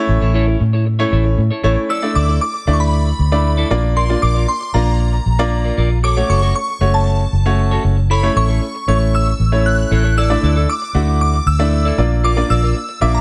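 A digital ambience frames this short excerpt of euphoric, carefree pop, moving at 116 BPM in a straight 4/4 in D major. From the opening second, a clear grand piano sits up front with intimate, natural tone and audible action noise, playing accompaniment beside a bright, twangy clean electric guitar whose picked riff is bathed in lush chorus. A vintage muted fingered electric bass anchors the low end, dark, round and amped with a foam-muted thump placed up front. At 1.9 seconds a shimmering FM bell with a halo takes the melody in a high register, its detuned, warbling voice carrying a dreamy vintage character, fast attack and long release, thickened by ensemble chorus and echoed by digital delay. Underneath, the harmony cycles through A, Dsus2, Bb and F#m before returning to A, Dsus2 and Bb.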